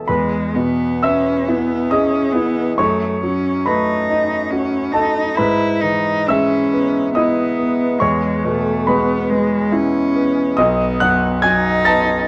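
Lyrical and serene, this short cut from a longer romantic classical piece pairs a cello with a grand piano in a slow 3/4 at 70 BPM, moving with a free, rubato feel in E major. The concert grand opens the passage as accompaniment, its clear, polished tone reaching from deep bass up into the high treble, with long sustain and an audible, intimate sound of the instrument's action. A single bowed cello enters at 0.1 seconds and carries the melody up front in a focused, rich voice with vibrato, staying within a compact middle range. The harmony moves gently from E through B7 over F#, E over G#, back to E, and comes to rest on B at 10.6 seconds, leaving the phrase open. Light reverb surrounds the duo, and the whole recording has the worn, warbling character of old cassette tape, with a warbly drift in pitch.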